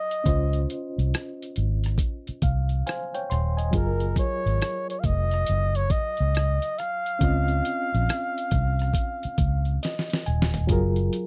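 A dry, close 1970s-style studio sound frames this relaxed neo-soul R&B cut at 69 BPM in Gb lydian, where a warm, vibrato-laced flugelhorn sings the melody up front until 9.8 seconds over a barky, lightly overdriven reed electric piano with fast tremolo that adds fills, a dusty, gritty sampler-style drum kit with thumpy kick and fat snare that fills from 9.8 seconds, and a dark, round, foam-muted fingered electric bass, all gliding between Dbmaj9 and Gbmaj9 chords on a swung sixteenth-note feel.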